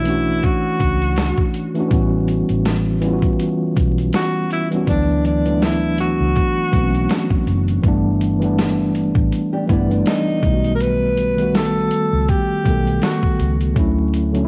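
Lo-fi hip hop with a cosy, mellow swing, this excerpt sets a breathy tenor saxophone melody, soft in attack with scooped notes and a whispered subtone vibrato under cassette tape and analog delay, against a clean, up-front tine electric piano carrying the chords. A dark, round, foam-muted fingered electric bass and a gritty, compressed sampler-style drum kit with a thumpy kick, medium-tuned snare and hi-hat hold the groove, while a small thumb-plucked nylon-string guitar slips in briefly from 9.5 to 10.4 seconds. Light reverb, vinyl crackle and a home recording on cassette wrap the whole in a dusty, intimate haze.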